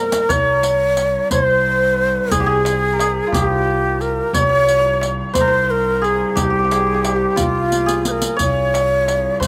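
A breathy, reedy ney sings a melancholic, soulful melody up front in this dry, outdoor excerpt of a Persian modal ensemble in 6/8, as a shimmering hammered santur with slapback echo plays a second line over a woody pizzicato upright bass, a rich bowed cello drone, soft-handed riq, and a soft-handed tombak in the background, with a drum fill at 7.7 seconds.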